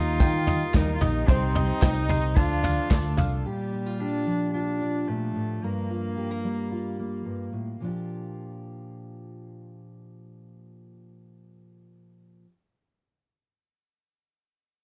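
Indie folk with a nostalgic, anthemic feel and a dark, close production, opening on a full band: a nasal, reedy bowed cello carries the melody up front with tape echo, while a mellow trumpet adds a second line with light vibrato. Beneath them sit a felt-muted upright piano with audible action noise, a shimmering octave-doubled twelve-string guitar, a twangy banjo playing arpeggios, a round fingered electric bass, a punchy brush drum kit, a distant jingly tambourine and crisp group handclaps. By about 3.5 seconds that ensemble falls away, leaving the cello until 7.3 seconds alongside a fingerpicked dreadnought steel-string guitar with fresh strings, which carries on alone to 12.5 seconds.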